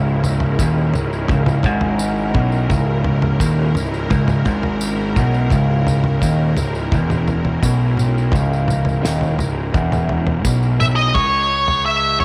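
A clean, phased electric guitar riff, fuzzy overdriven bass and a vintage string machine of chorused violas holding a C#m chord open this trippy, hypnotic psychedelic rock excerpt at 85 BPM in C# dorian, joined at 0.2 seconds by a dry, fat-snared 70s drum kit and jingly tambourine in a small, lightly reverberant room, before an up-front octave-fuzz lead guitar with slapback echo cuts in at 10.8 seconds as the strings, riff and tambourine drop away at 11.1 seconds.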